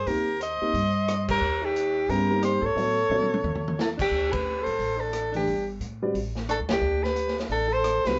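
Searching and hypnotic, this short excerpt of swung modal jazz puts a bright, close-miked soprano saxophone with vibrato up front on the melody, with an alto saxophone carrying a second line with light vibrato and scooped notes. Beneath them sit a woody pizzicato upright bass, a dark, mellow baby grand piano with audible action noise that drops out between 3.3 and 5.3 seconds, and a gritty, saturated vintage drum kit with dark cymbals and a punchy kick that plays a fill from 3.1 seconds, the band heard live together in a small, reverberant room with dulled highs.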